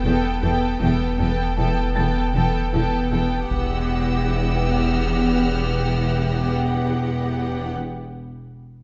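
A lush violin section carries the melody in this ominous, eerie suspense-film cue, over a clear second violin line, a close viola section, a rich cello riff, an intense, distant bowed cello bass, a smooth double bass section and a deep, round sine sub-bass drone, while a very quiet fingerpicked harp rings until 3.9 s and background taiko drums struck with hard sticks enter at 3.5 s alongside a high, focused violin texture, all set in a moderate scoring-stage reverb with a rolled-off top end.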